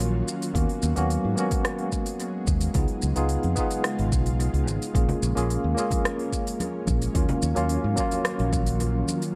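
An echo-heavy mix with light reverb carries this wistful, relaxed sunset chillout excerpt at 109 BPM, where a worn, slightly out-of-tune tine electric piano with fast tremolo and dub echo sits up front beside a direct fingered electric bass, over an ethereal, detuned pad with ensemble chorus and a slow attack, a deep house kit of smooth hi-hat, rim click and shaker, a layered electronic kick entering at 0.5 seconds, and ringing, close congas with dub echo in the background from 5.1 seconds, all set over a D#m9, G#m11/D#, C#7 and A#m7 progression.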